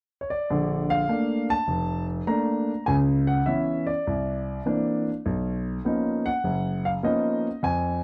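Playful and swinging, this short solo jazz excerpt features an intimate concert grand piano up front, its deep bass, long sustain and audible action noise sitting in a moderate club reverb with a dark production as it moves through rich chords from Bbmaj7 to Bmaj9#11.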